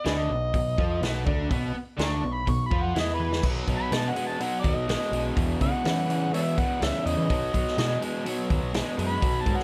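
Driving and swaggering, this blues rock and southern rock power trio excerpt sets a bright, double-tracked cranked stack guitar riff over a growling, round overdriven bass and an acoustic vintage drum kit with a punchy kick and rolled-off top, whose fill at 3.2 seconds launches the gritty, amplified harmonica into a jazz-style solo full of vibrato, scooped notes and tongue slaps from 3.4 seconds on.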